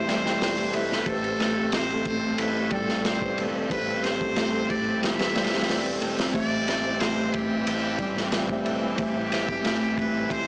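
Opening on a buzzy, distant muted trumpet melody with 12-bit sampler grit and tape echo, over mellow tine electric piano with tremolo, lush bowed strings, ringing Celtic harp arpeggios and a deep, round analog bass, this melancholic, hypnotic trip hop excerpt at 91 BPM in A minor brings in a crunchy, up-front breakbeat kit at 0.1 s and moves from C to Am9 and back, wrapped in a blown-out, overdriven, small-speaker sound with vinyl crackle.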